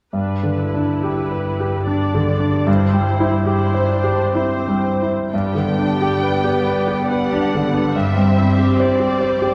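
Classical romantic music for piano and orchestra, lush and lyrical, moving at a rubato 69 BPM in 3/4 and G major, cut from a longer piece. A clear, up-front concert grand carries the melody with a deep bass, over veiled, con sordino violas and a distant, muted cello section holding a low G, the harmony alternating between G and C over G. At 5.3 seconds muted violin sections enter, one taking a dark, vibrato-rich melody up high while the other adds a soft second line in the background, all set in the wet reverb of a recital hall.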